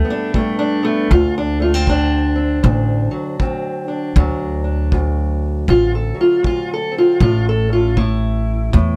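Acoustic country blues at 79 BPM in a swaggering, rollicking swing, this short cut from a longer piece sets a dark, boxy fingerpicked parlour steel-string acoustic guitar up front on the melody, joined at 0.3 seconds by a punchy, natural kick drum played with brushes and at 1.1 seconds by a woody pizzicato upright bass, all in a dry sound as the chords move from G to D7 and on to A5.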